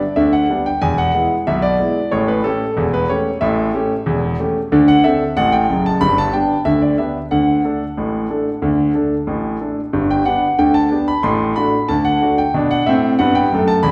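A straight 2/4 pulse at 92 BPM drives this cheerful, lively ragtime piece in G major, cut from a longer work. A solo concert grand piano carries everything from 0.0 to 13.9 s, sounding bright and up front with deep bass, audible action noise and an intimate, polished presence as the harmony moves from G through E, A7 and D7 back to G. The piano sits in a wet recital hall reverb of 1.5 seconds, lending a church or concert hall glow.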